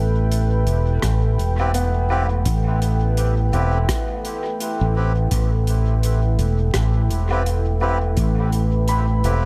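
Ambient dub at 84 BPM with a swung 16th feel, this meditative, hazy fragment rests on a single Am9 chord, where a round, punchy fingered electric bass sits up front beneath a deep, detuned sawtooth pad carrying chorus and reverb, while a soft-mallet kit of hi-hat, rim click and woodblock trails dub echo from 0.3 seconds, a tape-warm electronic kick pulses in the background from 1.0 seconds, a reedy, breathy melodica adds echoing stabs from 1.6 seconds, and a very quiet felt-muted upright piano spins intimate arpeggios, all inside an echo-heavy small-room mix.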